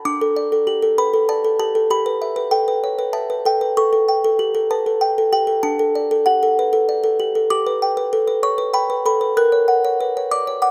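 A gentle 3/4 pulse at 97 BPM with a straight feel sets up this short classical lullaby for music box in D major, tuned slightly high with A4 at 441 Hz. The solo music box carries the whole passage from 0.0 to 10.7 seconds, its delicate, tinkling, plucked tones spanning D4 to F#6 with the bright, full character of a small box. Close, detailed miking places it up front and keeps its own sound dry, while a recital-hall reverb of 1.6 seconds lends the room a soft, wet halo. The harmony moves from D5 through Em/G, A7, D and G before arriving on F#/A# at 9.4 seconds, in keeping with the wistful, fragile mood. The clip is cut from a longer piece.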